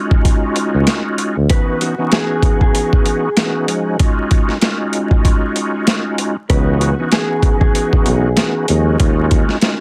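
A swung 96 BPM boom-bap groove in 4/4 drives this moody, tough hip-hop fragment, with a gritty, compressed sampler-style kit putting a thumpy kick, medium-tuned snare and hi-hat up front. A reedy, lightly overdriven tonewheel organ with chorus vibrato and slow rotary speaker carries the D#m11 and C#m11 chords through a cassette-tape haze, while a punchy tuba with light vibrato appears briefly at 0.7 seconds and returns at 6.5 seconds. From 1.5 seconds a dark, clean, fingered electric guitar plays a melody lower in the mix through spring reverb and digital delay, and the dense, heavily limited master is dusted with vinyl crackle.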